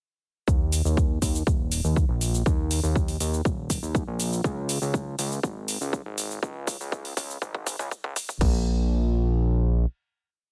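Progressive house at 121 BPM with a driving, dreamy mood, built as a single build-up from 0.5 s to 8.4 s where a punchy four-on-the-floor electronic kick sits up front beside a layered dance drum kit of metallic hats, shaker, open hat and crash, re-recorded in a small room. A fat, detuned sawtooth analog bass plays a sustained dotted rhythm with sidechain pumping, while a filter sweep runs through the rise and a drum fill comes in at 4.4 s. The drums stop at 8.5 s and the bass holds the final note until 9.9 s, all in a dry mix with a high-pass filter.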